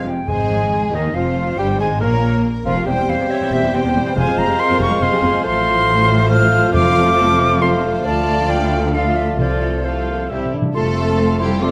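Close, detailed microphones in a moderate recital hall capture a dramatic yet cheerful romantic orchestral passage in 3/4, cut from a longer piece, where an airy flute sits up front over a distant, intense violin melody, joined by a mellow clarinet, a cor anglais, a smooth second violin section, a bassoon, a rich viola section, roomy French horns, and lush cellos and double basses, while very quiet timpani enter at 0.3 s, add a fill at 10.3 s, and bright trombones arrive at 10.7 s.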